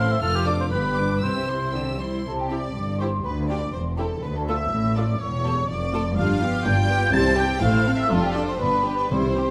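Lively and spirited, this short passage cut from a quick classical-period orchestral movement moves in a brisk two-beat metre with a straight feel. A rich, expressive violin section carries the melody with vibrato, while a second, lush and focused violin section plays a second line, and a warm, up-front solo oboe adds its own line only in the opening 2.0 seconds. Beneath them, a smooth-topped viola section supplies accompaniment, and bowed cellos with soft attacks and portamento join a distant-sounding double bass section to anchor the bass. At 2.3 seconds a mellow, hollow flute ensemble with an airy, tongued tone takes up a second line high above the strings, and from 6.2 seconds very quiet timpani struck with soft mallets add a round tone. The harmony moves through simple cadential progressions such as Dm/F, G and C, and a wet recital-hall reverb lends the orchestra a spacious glow.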